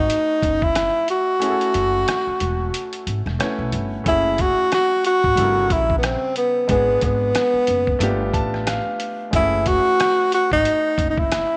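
A breathy tenor saxophone leads this nocturnal, smoky jazz-hop fragment, sitting up front with a mellow tone, vibrato, subtone and scooped notes. A concert grand piano and a pizzicato upright bass play alongside it from the start. The drums arrive a moment later with a compressed, pitched-down sampler sound of hi-hat, rim click and a muffled, thumpy kick, though the kick drops out from 1.4 seconds until 4.1 seconds, where the opening phrase begins its repeat. The sixteenths carry a gentle swing that gives the hip hop groove a relaxed, late-night feel, while the woody bass sits low beneath it. The piano stays in the background with a smooth, vintage tone and deep bass, adding short fills at 3.1 seconds and again at 8.0 seconds, as the harmony moves from F#m9 through Gdim7 and G#m7b5 to G9 and back. A moderate echo-chamber reverb lends the whole a dusky sense of space.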